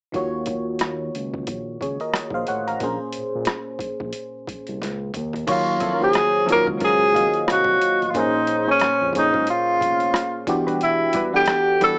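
A vibrato-laden tenor saxophone, distant yet up front with a cassette-tape haze, takes the solo melody at 5.5 s in this sultry, late-night neo-soul R&B excerpt, over a glassy, bell-like FM electric piano with chorus and phaser, a dark, gliding synth bass, and a gritty, overdriven boom bap sampler-style kit with a thumpy kick and high-tuned snare that plays a fill from 4.8 s, while a clean, fingered electric guitar joins in the background at 5.8 s, the whole mix carrying light reverb and the small-speaker sound of a home cassette recording.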